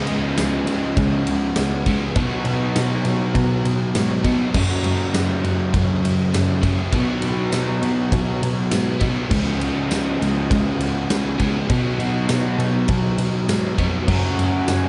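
A big, punchy acoustic drum kit sits up front in this dreamy, wistful shoegaze and dream pop excerpt at 101 BPM in 4/4, while a close, bowed cello carries the bass line with vibrato and portamento. Three overdriven guitars play riffs in the background: a bright, double-tracked crunchy part and two hollow-bodied semi-hollow parts, one with subtle chorus and one with reverse reverb. A jingly tambourine adds percussion, and at 14.1 seconds a shimmering pulse-width pad and a twangy, clean guitar with tape echo arrive on an F#madd9 chord, after a progression moving through C#5, B and F#m.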